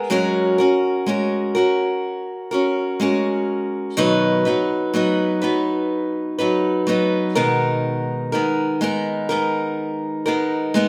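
The rhythm moves in a slow, straight 4/4 pulse, giving this short pop passage an emotional, longing mood. A single picked steel-string acoustic guitar carries the music alone from start to finish, sitting up front with a warm, concert-quality tone across a range from B2 to B4. The harmony opens on F#add9, shifts to B at 4.0 seconds, and settles onto G#madd9/B at 7.4 seconds, lending the brief phrase a tender, yearning colour. A moderate reverb from a large studio surrounds the guitar, and the sound has the natural feel of players performing together in one room. Cut from a longer piece, the fragment lasts just under 11 seconds.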